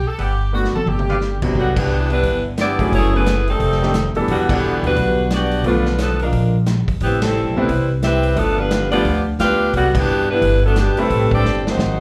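Energetic, swinging big band jazz at 176 BPM, cut from a longer piece, where an up-front saxophone section with light vibrato carries the melody over woody pizzicato upright bass, a dark, punchy big-band drum kit with fills at 0.5 and 11.4 seconds, intimate grand piano with audible action noise, a mellow, soft-attack trombone section in the background on a second line, and brief close-miked trumpet stabs that stop at 1.2 seconds, with slapback echo on the horns and piano and a light club reverb as if heard through a live venue's PA.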